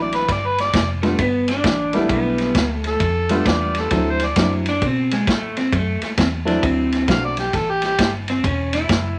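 Gritty and soulful, this short excerpt from a longer electric blues shuffle swings at 132 BPM in 4/4 in D mixolydian, moving from G7 to D7 and landing on A5. An overdriven, amplified harmonica sits up front as the second line, its jazz-style phrasing full of vibrato, tongue slaps and scooped notes. From 1.0 seconds an electric slide guitar carries the melody, played with fingerpicks and sounding slightly broken-up and compressed. Underneath, a dark upright piano with a worn, woody, intimate character and audible action noise comps until 7.4 seconds, while a foam-muted fingered electric bass adds a round, punchy low end. A vintage drum kit, recorded in a studio room with a punchy kick, medium-tuned snare and dark ride cymbal, keeps the shuffle moving with a rolled-off top, and light reverb lends the band a touch of space.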